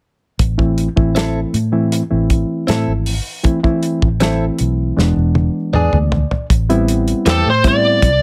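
Light reverb surrounds this short cut from a longer soul blues, with a dry, damped 70s drum kit and a round, foam-muted bass placed up front for a brooding, soulful weight. At 79 BPM in straight 4/4 and A harmonic minor, the kit's tight kick, medium-tuned snare, hi-hat and toms hold a steady pulse under the dark, amped bass as the harmony moves from Am to E7 and settles on Am7. A reedy electric piano, heard through its built-in speakers and touched with plate reverb, carries the accompaniment and adds a fill that overlaps a drum fill beginning at 5.0 seconds. A clean, scooped electric guitar, recorded direct and compressed, adds picked stabs at a lower level, also set in plate reverb. Near the close, at 7.3 seconds, a smooth, overdriven lead guitar enters with a brief picked melody, the loudest part in the mix.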